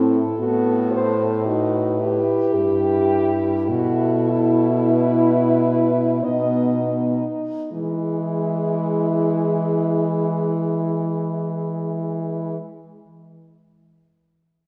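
Classical and lyrical, this short excerpt from a longer piece for horn quartet has a melancholic, yearning mood, moving in a rubato 3/4 at roughly 39 to 58 BPM and slowing down through its first 7.7 seconds. Four French horns play together from 0.0 to 12.6 seconds: a warm-toned melody horn with light vibrato and a soft attack sits in the background despite its close-miked sound, while a mellow second horn with vibrato carries a distant, roomy line beneath it. A third mellow horn supplies a punchy accompaniment, also set back in the mix, and a fourth horn with light vibrato anchors the bass up front. The harmony passes through B7/A, Em/G, B7sus4 and B before arriving on E at 7.7 seconds, where a second section begins. A wet concert hall reverb with a 2.3-second decay places the ensemble further back in the room, giving the whole a spacious, hushed glow.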